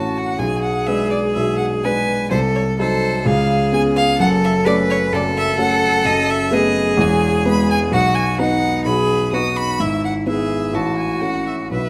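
The bowed violin carries the melody with a clear, smooth, even tone and vibrato, singing in its upper range while the piano trio moves at 128 BPM in 4/4 with a rubato feel. This quick classical-period movement is graceful and lively in spirit, opening in F# minor and turning to E major at 6.0 s. Beneath it, the cello plays a second line that sounds intense and up front, with a close, lightly vibrated tone. The grand piano supplies the accompaniment, the loudest of the three, with a dark, mellow, vintage character and audible action noise that lends an intimate feel. Close, detailed microphones capture the trio in a recital hall whose moderate reverb gives the sound a gentle bloom, and the passage is cut from a longer piece, all three instruments playing throughout its 11.9 seconds.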